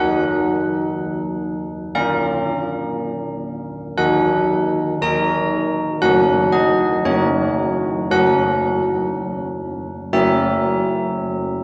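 Solemn and wintry, this short classical excerpt is a tune for old church bells alone, moving in a slow, straight 4/4 across D#m, A# and Gb harmonies for its 11.6 seconds. The bells sit up front with a bronze, clangorous ring, a minor-third overtone, beating tones and the strike of a worn iron clapper, ranging from D#3 to A#5. A wet church reverb surrounds them, and the whole sound carries the warbling pitch drift of worn old cassette tape.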